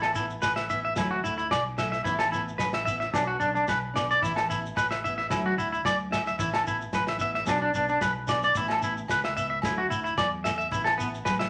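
A straight 4/4 highlife groove, sunny and carefree, where a twangy, slightly broken-up electric guitar plays up-front arpeggios over a bright, fingerpicked jumbo acoustic with audible finger squeak, a round, punchy fingered bass, a gritty, saturated breakbeat kit with tight kick and dark, rolled-off top, ringing agogo bells and congas set back in the mix, and a grainy, dry shekere, all moving through Asus2, Dadd9 and Bm in a wet studio reverb.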